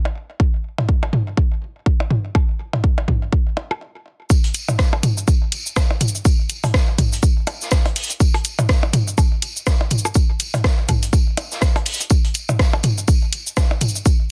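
Cool and hypnotic, this excerpt of a 123 BPM techno track with a swung 16th feel opens on overdriven electronic percussion blips and toms with digital delay, joined at 0.4 s by a punchy, layered electronic kick up front, then briefly stops at 3.8 s before the drop at 4.3 s brings in a house drum kit of cabasa, hi-hat and rim click alongside a quieter, mid-forward vintage acoustic kit of hi-hat, medium-tuned snare and tambourine with a rolled-off top, high-pass filtering and sidechain pumping on its hats, all in a dry, dense, heavily limited modern master.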